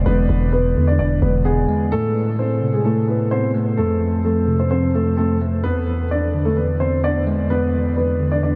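Brooding and hard-hitting, this half-time trap cut at 129 BPM sits in A harmonic minor, with a worn, slightly out-of-tune tine electric piano laying down filtered chords that move from E7 through Amadd9 and F back to E7. A growling, buzzy 808-style bass punches in up front for only the first 1.7 seconds, while a dark, boxy concert grand carries the melody through a low-pass filter and analog delay. The whole mix is soaked in a huge ambient reverb with a 7.9-second tail, giving this fragment of a longer piece a dreamy, cavernous haze.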